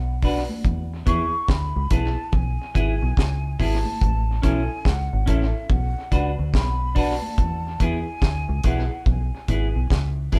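A swung 16th-note groove at 71 BPM in 4/4 drives this uplifting roots reggae excerpt, where a dry, up-front drum kit with a high-tuned snare, tight kick, hi-hat and tape echo sits beside a round, foam-muted dub bass, while a clean picked semi-hollow guitar with spring reverb comps through Bm, E and A, a breathy, distant jazz flute with vibrato carries the melody, and ringing, hard-hand congas sound in the background of a small room where the band plays live together.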